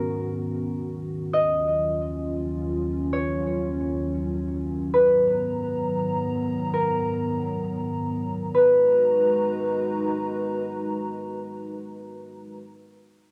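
A concert harp and a dark analog pad open together in this melancholic, spacious hip hop excerpt, which moves in free time in G# dorian. The harp carries the melody within a narrow upper-middle range, its mellow, thumb-plucked acoustic notes ringing up front through cassette tape coloring and a tape echo. Beneath it, the pad holds sustained chords from a deep low register to high above, a moody, detuned blend of square, sawtooth and triangle waves with a sub octave and ring modulation, softened by a slow attack and thickened with chorus. The harmony drifts from G#m7 to D#m9 and back to G#m7 at 4.9 seconds. The harp falls away at 10.6 seconds, leaving the pad alone until it stops at 12.6 seconds. A moderate spring reverb and the character of a home cassette recording give the whole piece a spacious feel.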